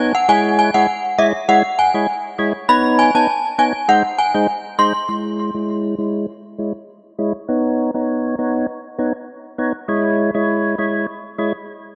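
Tough and hypnotic, this dancehall fragment puts a fat, clicky percussive tonewheel organ up front, turning through a slow rotary speaker and low-pass filter as it carries the C#m, Badd9 and G# chords until 11.5 seconds. An inharmonic FM synth chime rings out the melody with ensemble chorus and delay until 4.9 seconds, and from 5.1 seconds a filter sweep works on the organ. A lush hall reverb and worn, warbling cassette tape with pitch drift give the recording an aged haze.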